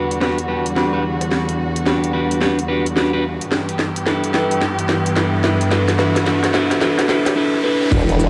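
Crackling vinyl and a light digital ambience wrap this echo-heavy glitch hop excerpt, a funky, playful build-up at 109 BPM with swung sixteenths, moving from Em9 to G6. Lush, up-front bowed strings carry gritty 12-bit sampler texture and sidechain pumping, while clean electric guitar stabs pump through phaser and tape echo. An electronic drum kit with a cracking snare and bright hats runs a tape-echoed fill to 7.4 seconds, and a background riser that starts at 1.8 seconds lands on an impact at 7.9 seconds, where a wobbling, formant-swept bass with chorus, a knocking electronic kick and mellow, grainy maracas arrive.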